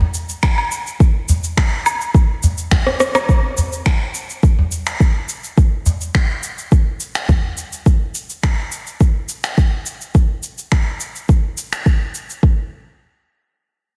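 Downtempo groove at 105 BPM in a straight 4/4, with a mystical, meditative mood, cut from a longer piece. A small, acoustic udu sits up front in a live room from the start until 7.4 seconds, joined by a deep, overdriven electronic kick drum and a produced kit of electronic shaker, finger snaps, woodblock and rim click, both re-recorded in a large room and gritty with overdrive, the snare softly clipped. A drum fill at 2.9 seconds leads into the longer middle stretch, and the light reverb and dense, heavily limited modern master keep the percussion close and full.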